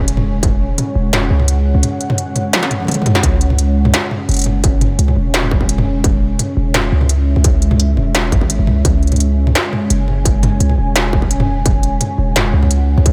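A half-time drum and bass groove in 4/4 sets a tense, cinematic mood in this short cut from a longer piece, driven by an up-front industrial kit of clanging snare, smooth hi-hats and toms that plays a fill from 2.5 to 3.2 seconds. After a brief early hit, a distorted electronic kick settles in for good at 3.2 seconds, while a long, sine-like 808-style bass with fast attack and mellow decay sits deep and close. Behind them, a moody sawtooth pad of detuned unison voices and a sub octave holds slow-blooming sustained chords with chorus, its own reverb and a sidechain pump, in a dry overall mix.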